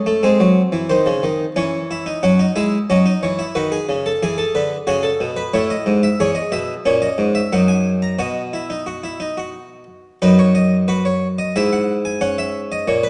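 Classical baroque-style three-part fugue, stately and elegant, cut from a longer piece, with a solo Italian-style harpsichord, plucked and brilliant with octave strings, sitting up front across a span from E2 to A#5 at a steady 90 BPM in 3/4, settling into B major from 6.2 s as chords such as E7, C#m7/E and B/F# pass through, all set in a wet recital-hall reverb with a 1.7-second decay and a dark production that tops out at 10.6 kHz.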